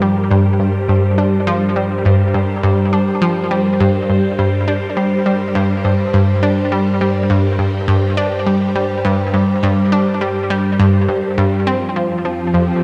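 Ambient, sequencer-driven space music with a hypnotic, cosmic mood, heard in a short passage cut from a longer piece. Up front, a round, fast-attack analog pluck repeats a sawtooth riff that decays, trailed by tape echo and chorus. Beside it, a phased string machine holds swirling, vintage chords with a slow attack and long release, its sheen thickened by ensemble chorus. Further back, an evolving pulse-width analog drone sits low as the bass, while a tempo-synced gated triangle texture pulses on a single high note, washed in chorus and its own reverb. The harmony rests on G minor before moving to F at 11.7 seconds, and a dark, warm production sets the whole passage in a lush concert-hall ambience.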